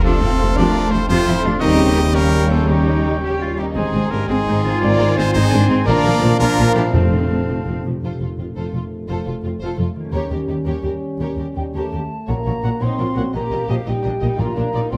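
Triumphant and adventurous, this cinematic orchestral passage in 6/8 is cut from a longer piece, with a distant, lush violin section carrying the melody while a second violin section, an airy silver flute and a bright oboe add supporting lines, and violas with portamento fill the accompaniment. Dark, roomy French horns and trombones hold sustained chords, a ringing concert harp plays quiet arpeggios, and woody double basses and smooth cellos anchor the bass, while a brilliant solo trumpet punctuates with stabs. Crisp timpani with hard mallets enter at 6.9 seconds and return at 12.3 seconds, and the whole orchestra sits in a moderate recital hall reverb captured by close, detailed microphones.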